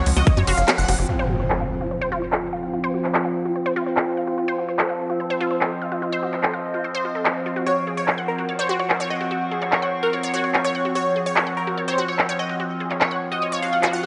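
An overdriven big-room dance kit sits up front in this driving, psychedelic trance excerpt, its crisp hats, handclaps, bongos, ride and crash cymbals layered over a tight, wave-folded sequencer bass that drops out at 1.1 seconds just as an electronic impact hits. A detuned unison pluck carries the riff through sidechain pumping and dub echo, while an airy supersaw stab with phaser and tape echo returns at 7.7 seconds over a resonant drone of moving overtones and a warbling, nostalgic lo-fi pad in the background. A filter sweep runs across the synth arpeggio sound, and a swell closes the passage in a lush hall reverb.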